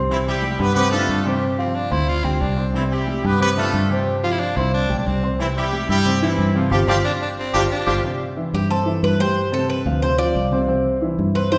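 A brisk, straight 4/4 pulse at 181 BPM drives this joyful, danceable Latin excerpt in C major. A dark, mellow baby grand piano with audible action noise carries the accompaniment throughout, over a round, foam-muted fingered electric bass. Up front, a clear, punchy horn section states the melody with light vibrato and octave doubling. From 1.6 seconds a growling, raspy baritone saxophone adds a second line. After a band accent closes the opening section at 8.0 seconds, a metallic, picked Cuban tres with double strings takes a solo to the end. The harmony moves between Cadd9, C and G7sus4, and a wet recital hall reverb gives the recording a spacious, church-like sound.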